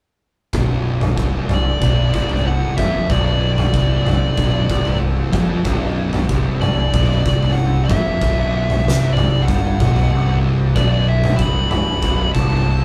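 A straight 4/4 pulse at 94 BPM drives this brooding, sludgy stoner and doom metal passage over a B minor chord, cut from a longer piece, with an oversized low-tuned drum kit up front, its boomy kick, fat snare and toms sounding saturated and gritty in a big, pumping room. Two thick fuzz guitars grind out the riff low in the register, one dark and the other warmer and set back, while a bright, punchy picked electric bass with overdrive sits behind them. From 1.5 s a compressed fuzz lead guitar carries a distorted melody high above, all captured as a band playing live in one room with moderate studio ambience.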